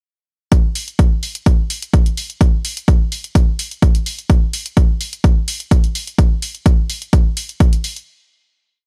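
A punchy analog kick drum sits up front, driving a straight four-on-the-floor house groove at 127 BPM in 4/4 from 0.5 seconds. Programmed electronic hi-hats, closed and open, ride behind it with a backbeat feel and sidechain pumping, carrying on until 8.1 seconds, just after the kick stops at 7.7 seconds. Both drums have a tape-warm character and sound re-recorded in a small room, giving this short, complete piece a funky, nostalgic mood. The production is dry and gritty, with transformer saturation and little reverb, like a hardware recording. A final hit closes the groove from 8.1 to 8.9 seconds.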